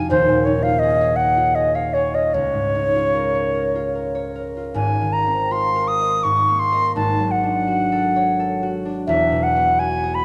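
A pure, straight-toned concert flute carries the tongued melody up front over a ringing, fingerpicked concert harp in this dreamy, pastoral impressionist classical excerpt, a rubato duo in 3/4 whose suspended and added-sixth chords sit in a moderate scoring-stage reverb.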